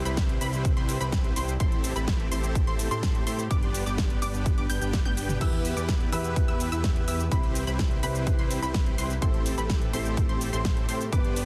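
Emotional and euphoric, this short cut from a longer festival progressive house track moves at 126 BPM in a straight 4/4, cycling through Cmaj7, Am7, G and Em. A punchy, tape-warm electronic kick sits up front, joined by a big-room kit with a huge snare, metallic hats, shaker, toms and crash, and a drum fill runs from 4.9 to 5.4 seconds. A dense, heavily compressed supersaw carries the riff, thick and detuned with a sub octave and digital delay, while a fat, saturated analog bass holds the low end and a lush, bright unison pluck spins arpeggios high above through analog chorus and delay. In the background, a muted, veiled string section bowed con sordino sustains chords with vibrato, and from 5.4 seconds a dark, mellow concert grand adds accompaniment with delay. Sidechain pumping runs through the strings, pluck, supersaw, bass and piano, and the dense, heavily limited master carries little reverb.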